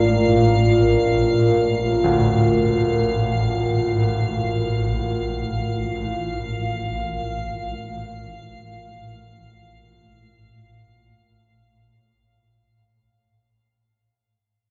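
Dark ambient drone in free time, cavernous and desolate, where a swarming, nasal, detuned drone sits up front with built-in reverb, a deep, moody analog pad holds sustained chords with chorus, an icy, crystalline glass pad adds airy texture, and from 2.0 s a natural baby grand piano plays background arpeggios through diffuse delay, all of it washed in a wet cathedral reverb and worn, warbling cassette tape as this piece fades out.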